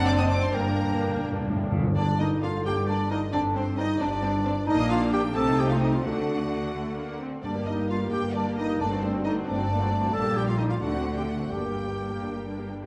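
An urgent, stormy classical-period orchestral movement in G minor at a quick 87 BPM in 6/8 opens with a clear violin section on a second line, lush bowed violas, dark distant horn chords, smooth cellos and double basses, and brief touches from a very quiet, hollow flute ensemble and a lightly vibrato oboe, while a background violin section carries the melody, round soft-mallet timpani enter at 0.5 s and again at 7.4 s, and a mellow, up-front clarinet takes up a second line from 2.0 s, set in a reverberant recital hall.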